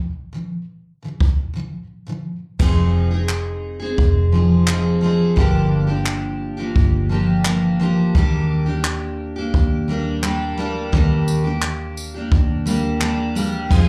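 Heard through a club's PA with moderate room reverb, this sunny, carefree acoustic pop clip opens on a full-bodied, double-tracked picked steel-string acoustic guitar with slapback echo, joined at 1.2 s by an up-front brushed jazz kit with dark cymbals, a boomy kick, crash, handclaps and tambourine, then at 2.6 s by a round, foam-muted vintage electric bass, before a quieter, lightly overdriven tonewheel organ with key click, chorus vibrato and slow rotary speaker slips in sustained chords at 13.7 s as the excerpt is cut off.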